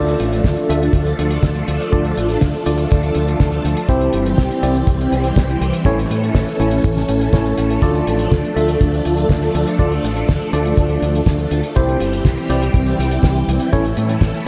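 A swirling, bright sawtooth string machine with chorus, phaser and gritty sampler texture holds sustained chords up front, while a worn, slightly out-of-tune tine electric piano plays filtered stabs with analog delay and a filter sweep, and a growling, overdriven fingered bass drives underneath. A damped 70s kit with a fat snare, hi-hat and cabasa joins at 0.1 seconds, and a dark, tight kick follows at 0.4 seconds, both dry in tone but set in studio reverb. This danceable, melodramatic slice of italo disco, cut from a longer piece, moves through a Dm, C and A progression in a dreamy mix soaked in lush hall reverb.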